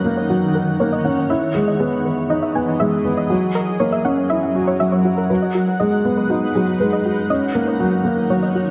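A lush, digital hall ambience frames this intimate, hypnotic piano and strings electronica fragment in G# minor at 120 BPM, where a dark, woody upright piano riff sits up front with delay, a cloudy, evolving granular pad holds sustained chords through its own built-in reverb, and a soft, round pluck with chorus and delay spins arpeggios in the background over D#m7, Emaj7, F#7 and G#m7.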